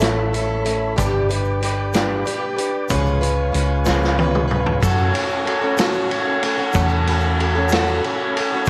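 A straight, rolling 6/8 lilt drives this open-road folk rock and heartland rock excerpt, with a shimmering, octave-doubled twelve-string acoustic guitar jangling up front over a round, dark hollow-body bass and a saturated vintage drum kit with gritty, rolled-off cymbals. A tonewheel organ holds clean chords in the background through a slow rotary speaker, while a grainy egg shaker sits distant behind the band in a large-room space, the whole mix wrapped in light small-room reverb. A drum fill from 3.9 to 4.8 seconds carries the passage from A, G and C#7 into F#m.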